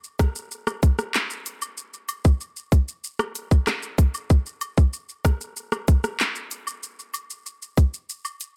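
Set in an echo-heavy digital ambience, this short, sultry and bouncy dancehall clip in straight 4/4 puts an up-front electronic island pop drum kit, with its tight kick, dark hi-hats, handclaps, rim clicks and shaker, ahead of an acoustic cabasa and woodblock that enter at 0.2 seconds, close and dry yet tucked in the background under a dub echo.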